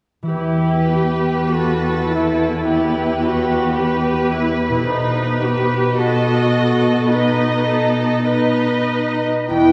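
An elegiac, melancholic passage from a slow romantic orchestral movement in E minor, moving at 46-56 BPM in 4/4 with a rubato feel and tuned slightly low at A4 = 435 Hz. A fingerpicked concert harp rings in the background with arpeggios from 0.2 seconds, and muted strings enter at 0.3 seconds: two chamber violin sections carry the melody and a second line, a symphonic viola section supplies accompaniment, and an up-front chamber cello section holds the bass. The strings play con sordino with vibrato, giving a veiled, dark colour, with the violins sounding distant, the violas softly attacked and the cellos smooth on top. The harmony rests on E minor before turning to B7b9 at 4.9 seconds. A dark, tight French horn section sounds a sustained E4 near the very end, at 9.5 seconds, sitting up front and clearly louder than the strings. A wet church reverb with a long 3.5-second tail surrounds the ensemble, and the passage is cut from a longer piece.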